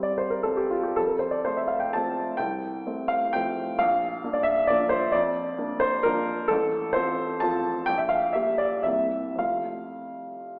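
A woody, polished upright piano plays a sparkling, graceful classical waltz alone in F major and 3/4, its rubato flexing between 104 and 138 BPM over a brief harmonic path that settles from C7 back to F, all tuned to A4 = 439 Hz and set in a recital hall's lush reverb heard from deeper in the room through an AM radio tone, in this 10.6-second fragment cut from a longer piece.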